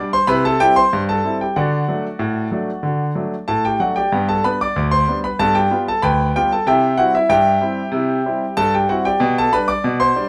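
A straight, even 2/4 pulse drives this lively, cheerful ragtime passage, cut from a longer piece. A concert grand piano plays alone for the full 10.3 seconds, reaching from deep bass notes up into its upper register. The instrument sounds clear and intimate, sitting up front with long sustain and a touch of audible action noise that brings the listener close to the keys. The harmony moves from C to D, settles on G, then turns through G7 back to C before landing on G/B near 9.2 seconds. A moderate studio reverb gives the polished piano tone a gentle sense of space.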